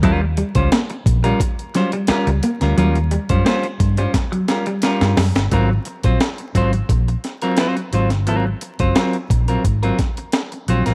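Funk at 87 BPM in a straight 4/4, playful and strutting, built on a dark, foam-muted fingered bass and a gritty sampler-style breakbeat kit with a thumpy kick and high-tuned snare, both sitting up front. A twangy clean electric guitar plays accompaniment throughout, while a hollow-body semi-hollow guitar with harmonic tremolo carries a short riff until 5.3 seconds, and a drum fill from 4.1 seconds leads the harmony from Eb9 to Ab13 at 5.5 seconds. Light reverb and vinyl crackle give this cut from a longer piece a vintage, sampled character.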